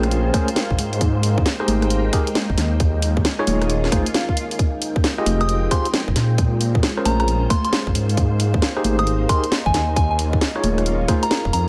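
A rumbling, detuned saw bass with tube saturation anchors this moody, late-night two-step UK garage excerpt at 134 BPM, where a tight electronic kick and an up-front garage kit of congas, bright hats, rim clicks and a cracking snare swing beneath gritty, overdriven electric piano stabs with fast tremolo and delay, while a silky string machine and a deep ambient pad sit in the background with sidechain pumping, a brief electronic swell sounds at 3.9 seconds, and a pure FM bell melody enters at 5.4 seconds over Bbm9, Abmaj7, Eb9sus4 and Fm9 chords.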